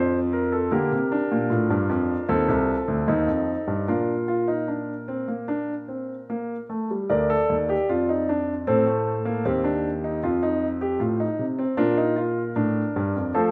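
A warm concert grand piano plays alone, up front, with deep bass, an open tone and long sustain, spanning C2 to D5 in a serious, contemplative baroque-style four-part fugue in Bb major at 76 BPM in a straight 4/4. This passage from a longer work falls into two halves, the second arriving at 7.1 seconds, as the harmony moves through Dm/F, F7 and Bb, then Bb/D, Adim and F7 before settling on Bb. A wet stone room reverb with a 1.2-second decay surrounds the piano.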